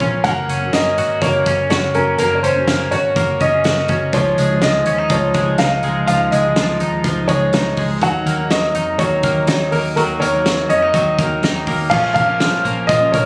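A straight 4/4 pulse from a loose, roomy drum kit with a fat snare and punchy kick drives this wistful, bittersweet jangly indie pop excerpt, where a round, foam-muted vintage picked electric bass sits under bright, twangy twelve-string electric guitar arpeggios and a full-bodied fingerpicked steel-string acoustic guitar tucked in the background, while a clear, woody upright piano carries the melody from 0.2 s with slapback echo and audible action noise over chords moving from Gb through Dbadd9 and Ebm to Bbm, the mix captured on a phone in the room with moderate spring reverb and compression.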